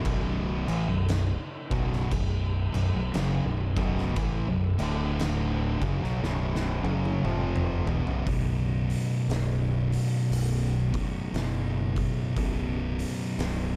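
A slow, swung 4/4 groove drives this brooding, sludgy stretch of stoner and doom metal, cut from a longer piece, as an oversized, low-tuned acoustic kit pounds out a boomy kick and fat snare in a pumping room sound, then rolls into a drum fill from 6.2 to 8.3 seconds. Two thick fuzz guitars sit in the background grinding a picked riff over B5 and D5 power chords, alongside a bright, overdriven, double-tracked electric guitar that drops out at 8.3 seconds, while a growling fingered bass adds a punchy, tube-saturated low end. The dark production carries light reverb and a small-room ambience.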